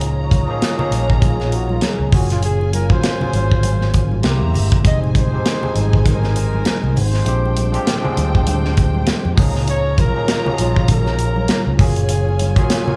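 Swung sixteenths roll over a steady 4/4 groove in this silky, cinematic stretch of lush 1970s-style soul, cut from a longer piece. Up front, the acoustic drum kit sets the pulse with a punchy kick, a medium-tuned snare and hi-hat, its top rolled off, while a round, amped fingered electric bass sits just beneath. A barky tine electric piano, lightly overdriven through a combo amp, adds bright chords over changes that move through lush ninth and thirteenth colours. The dark, woody string section bows a smooth, vibrato-rich second line, and very quiet congas, close and dry, ring softly from 0.3 seconds. A vibraphone struck with hard mallets leaves a metallic ring high in the background until 9.6 seconds, and from 1.2 seconds a mellow, present flugelhorn takes a jazz-style solo with light vibrato, all captured as a band playing live in one room with light reverb.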